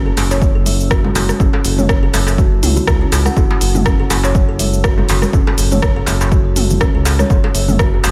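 A kalimba opens this short afro house excerpt, its woody, hollow-box thumb plucks ringing through arpeggios between C#4 and F#5. Under it, a smooth sawtooth-and-triangle synth bass sustains a mellow low line from F#1 to C#2, and both parts share a sidechain pumping, while the kalimba also passes through a low-pass filter and tape echo. The groove sits at 122 BPM in 4/4 with a 56% swing on the sixteenths, centred on F# minor, with an earthy, spiritual mood. A tight, cracking djembe enters at 0.1 seconds, and by 0.2 seconds an overdriven deep house kit of hi-hat, rim click, shaker and toms joins, alongside thick-skinned, medium-tuned congas played with soft hands in the background. A punchy, layered electronic kick arrives at 0.4 seconds, overdriven and carrying a small room ambience like the kit, and it stands as the loudest part. The hand drums have a vintage, band-limited acoustic character, and light studio reverb gives the whole a gentle sense of space.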